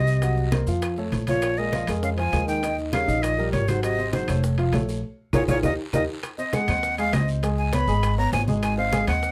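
A breathy, bright jazz flute leads this sunny, sophisticated Afro-Cuban jazz excerpt at 200 BPM in 4/4. Its metal tone carries vibrato and a crisp, chiffy attack up front, and it takes a solo from 6.2 seconds. Beneath it, a trombone with a bucket mute plays a veiled second line with vibrato and scooped notes, sounding distant and roomy in the background until 6.0 seconds. A concert grand piano supplies intimate accompaniment with audible action noise and deep bass, while a woody pizzicato upright bass on steel strings sits up front. The percussion gathers damped, low-tuned congas, tight, high-tuned bongos, ringing metal-shell timbales, a raspy guiro, grainy maracas and very quiet claves, with the timbales and claves carrying a vintage, band-limited colour. A band accent and drum fill mark the turn into the flute solo, all set in Ab mixolydian under light reverb and close, detailed microphones.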